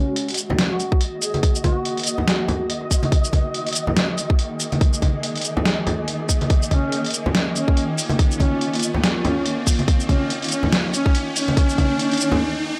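A pitched-down, tape-warm sampler-style kit of hi-hat, shaker and snare opens a half-time 4/4 groove at 142 BPM, swung on the sixteenths, with ringing hand-played congas trailing dub echo, before a tight, overdriven electronic kick lands up front. This cavernous, heavy slice of deep dubstep in Eb minor is cut from a longer piece and works as one long build-up. A mellow, distant duduk carries the folk-style melody with vibrato and scooped notes, heard briefly at the start and returning at 6.7 seconds. Its dub echo and low-pass filter run through a sweep across the whole passage. A bright, blurred granular cloud pad holds sustained chords throughout, while a flickering, detuned grainy texture hovers in the background and an electronic riser climbs in from 3.3 seconds toward a short break at 12.4 seconds. The sound is dry and gritty, with only light reverb.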